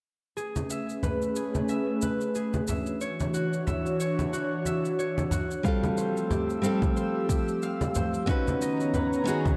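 This sunny chillout fragment opens at 0.4 seconds with an airy, breathy pad holding sustained maj9 chords, joined by a concert harp playing ringing fingerpicked arpeggios and a tape-warm, produced cabasa set in studio reverb. The pad is mellow and full-bodied, with a detuned sawtooth and triangle blend, a noise layer, ring modulation, chorus and a filter sweep, and it sits up front. The harp carries vintage 12-bit sampler grit, a low-pass filter and tape echo, while congas struck with hard hands enter at 0.6 seconds with a small-room acoustic ring. At 5.6 seconds a bright, fingerpicked nylon-string guitar with fresh strings and tape echo arrives up front alongside a deep, layered electronic kick drum. The groove moves at 91 BPM in 4/4 with a gentle sixteenth-note swing, cycling through Amaj9, Dmaj9, Fmaj9 and Bmaj9 inside a dark production bathed in a lush hall reverb.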